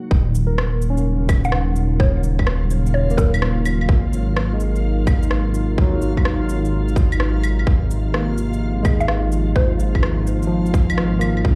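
Future garage with a ghostly, nocturnal mood and a swung 4/4 groove, cut from a longer piece: an up-front, tight, overdriven electronic kick and overdriven electronic shaker, rim click and claves drive it over a deep, rumbling, detuned saw bass. A warbling, nostalgic, lo-fi tape-like pad with chorus and sidechain pumping sustains the chords under a bright, barky tine electric piano with tape echo, while a reversed, dreamy backwards texture swells faintly behind them. A woody, round, mallet-like synth pluck with chorus and tape echo carries the melody at 1.4 seconds and again at 9.0 seconds, and the whole mix sits in a large studio reverb.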